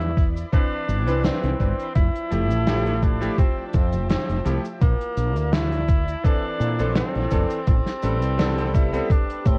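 Worn, warbling cassette tape colours this short vaporwave clip, its pitch drifting woozily inside a small room ambience that feels nostalgic. A warm tenor saxophone carries the melody with vintage jazz-style vibrato and tape echo, floating over a very quiet, silky string machine that holds slow-attack chords with a long release and an ensemble chorus shimmer. Up front, a woody fretless electric bass sounds dark, round and growly, thickened by tube saturation and a lush chorus. A gated 80s drum kit of cabasa, hi-hat and a medium-tuned snare plays with a slight swing on the sixteenths, and a thumpy electronic kick joins at 0.2 seconds; both carry the grit of a 12-bit sampler. From 0.5 to 9.1 seconds a bright, clangy electric grand piano adds cutting accompaniment through its own lush chorus as the harmony moves from Cmaj9 to Fmaj9, Bbmaj9#11 and Am9.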